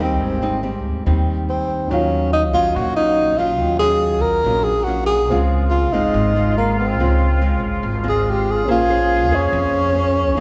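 A breathy, dark tenor saxophone carries the melody up front in an intimate, close-miked subtone, with vibrato and scooped notes, over a breezy, sunny bossa nova at 142 BPM that moves from Abmaj7 through Ebm9 and Dbmaj7 to Bbm9. A small fingerpicked nylon-string guitar, a woody pizzicato upright bass and a very quiet baby grand piano with open, long sustain fill out the accompaniment. At 5.3 s a small flute group adds a pure, crisp-attacked second line with vibrato, all set in a wet church reverb in this piece cut from a longer work.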